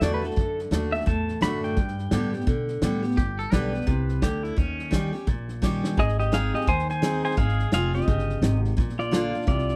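Easygoing and heartfelt, this excerpt of swinging honky-tonk and classic country at 171 BPM opens in G major with a bright, fingerpicked pedal steel guitar carrying the melody up front with slide and volume swells. A full-bodied dreadnought acoustic guitar is picked up front alongside it, finger squeaks audible, while a woody, thumpy pizzicato upright bass and a small-room drum kit with a punchy kick and medium-tuned snare hold the groove. A clean, twangy electric guitar adds a soft second line through tape echo from 3.2 to 4.9 seconds, before the pedal steel returns as the music lifts to Ab major at 6.0 seconds, all in a dry, close 1970s-style studio sound.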